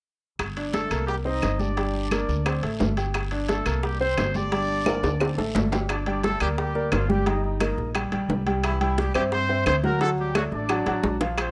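A punchy, up-front horn section carries the melody in this driving, danceable salsa fragment at 175 BPM in G minor, over a clear grand piano accompaniment and a woody, thumpy pizzicato upright bass, while tight, high-tuned bongos, ringing metal-shell timbales, bright congas and saturated claves keep the groove, a raspy guiro drops out at 5.9 seconds, drum fills arrive around 4.9 and 10.9 seconds, and the whole has the small-room feel of a rough home demo.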